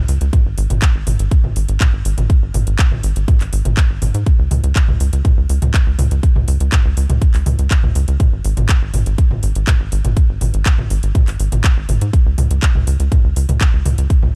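Dark and hypnotic, this melodic techno excerpt moves at 122 BPM in a straight 4/4, built around a tight, driving sequencer bass ranging from G#1 to G#2. Its sawtooth, square and triangle tones are shaped by a fast-attack filter pluck and sidechain pumping, and it sits up front with a mellow edge. A punchy, tape-tinged electronic kick sits forward in the mix from 0.3 seconds, while a layered house kit of handclaps, metallic hats and toms pumps beneath it, re-recorded in a small room. The sound is dry and close, with little reverb.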